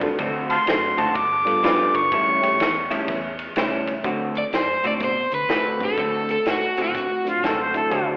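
Heard as a live gig through the venue's PA with a thin, telephone-like tone and a moderate club reverb, this short cut from a gritty, laid-back electric blues shuffle in D mixolydian swings along at 124 BPM over D7, G7 and A7. A vintage drum kit with dark cymbals and a punchy kick, a round, foam-muted bass, a twangy, slightly broken-up guitar riff with chorus and slapback echo, and a reedy electric piano with fast tremolo sitting in the background carry the groove throughout. An amplified, overdriven harmonica takes an up-front solo from 0.5 seconds with tongue slaps and scooped notes; an overdriven hollow-body guitar then carries the melody from 4.4 seconds, and the harmonica returns at 7.3 seconds.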